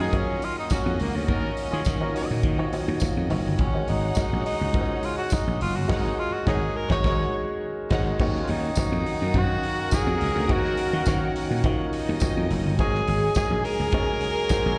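A breathy, whispered tenor saxophone takes an intimate solo up front from the start of this glamorous, celebratory disco excerpt, over a growly, punchy slap bass, lush bowed strings in the background, a natural-sounding baby grand piano, very quiet sustained chords from a lightly overdriven tonewheel organ with key click, and distant, tight horn stabs that drop out at 2.3 seconds and return at 9.3 seconds. A damped 70s drum kit with dark cymbals and a tight kick, joined by a jingly vintage tambourine, completes the rhythm section, and the band hits an accent near the close of the saxophone solo. The saxophone, strings, piano and horns carry slapback echo and plate reverb, and the performance comes across as a live gig heard through a venue's PA in a recital hall.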